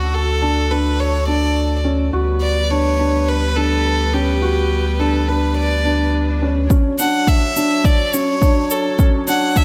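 Tender and hopeful, this piano and strings electronica clip at 105 BPM in D major sets an up-front violin melody with light vibrato and airy sul tasto bowing over rich, filtered string quartet chords and a mellow felt-muted upright piano riff with audible action noise, while a round sine sub bass with sidechain pumping holds until 6.7 s, a faint electronic swell appears from 5.8 s, and at 6.7 s an overdriven deep kick and a background shaker begin a build-up, the whole mix sitting in light reverb and small room ambience.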